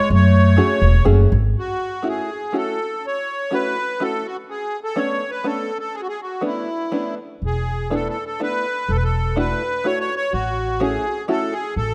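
A reedy, sweet accordion with light tremolo tuning carries the melody up front in this nostalgic, whirling musette waltz excerpt in A major at 124 BPM in 3/4, while a soft-attacked clarinet offers a brief classical-style second line in the background until 1.0 seconds, a plunky, fingerpicked open-back banjo supplies twangy, percussive accompaniment, and a growly, woody pizzicato upright bass drops out at 1.5 seconds before returning at 7.4 seconds as the harmony moves from A6 through Bm9 to suspended E chords, all within light reverb.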